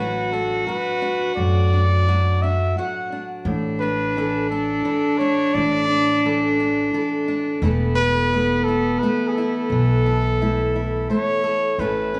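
Acoustic folk for a small band in an unhurried 3/4 at 87 BPM, hopeful and nostalgic in mood, tuned slightly low to A4 = 436 Hz and moving through Bm/A, Dsus2/A and Esus4. A mellow, classically styled trumpet carries the melody up front with plate reverb, while a bowed cello played sul tasto adds a pure, floating second line with a soft attack until 11.4 s. Underneath, a fingerpicked steel-string acoustic guitar gives warm, concert-style accompaniment and a woody pizzicato upright bass sits up front, all set in a moderate studio room.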